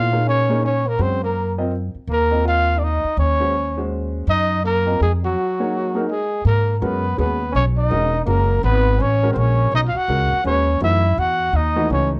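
Close, detailed microphones and light reverb give this short cut from a longer modal jazz piece an intimate sound, with a spiritual, intense mood and a swung, lilting three-beat feel. A breathy, dark-toned trumpet carries the melody up front, its vibrato and scooped notes sliding into a smooth top. Beneath it, a bright, punchy trombone plays a forceful second line that sits distant and roomy, with vibrato of its own. A worn baby grand piano supplies warm, present accompaniment, while a woody upright bass with steel strings is plucked up front. A brief break arrives at 5.4 seconds, the harmony shifts to a new centre at 6.5 seconds, and a final chord change lands at 10.8 seconds.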